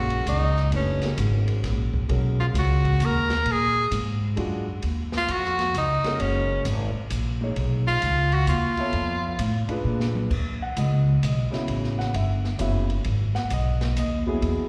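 A swung jazz waltz in three sets a swinging, late-night mood in this small-group bop excerpt, heard as a live gig through the venue's PA with a recital-hall reverb. Up front, a breathy tenor saxophone carries the melody with vibrato and a soft attack until 9.8 seconds, over a warm grand piano with slapback echo and a woody, growly pizzicato upright bass. A dark, smooth drum kit with a boomy kick and rolled-off top plays a fill at 9.8 seconds into a passage where piano, bass and drums move through chords such as Ebm7 and A13.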